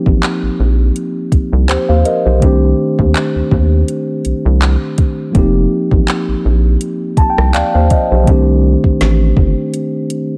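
Contemporary R&B with a sensual, moody feel, this short piece cut from a longer track moves at an unhurried pace with a light swing on the sixteenths. A mellow tine electric piano carries the accompaniment from the opening moment, its clean tone heard through built-in speakers, and it plays a fill from 6.8 to 8.3 seconds. Underneath, a rubbery square bass sits up front with a dark, hollow, bouncy tone and a quick filter pluck, stopping at 9.5 seconds. The smooth R&B drum kit has an electronic, produced character, with a soft kick, woody snare, metallic hi-hats, rim clicks and handclaps, all given a tape-warm finish. The harmony alternates between F9sus4 and Cm69, and the parts sit in a digital ambience.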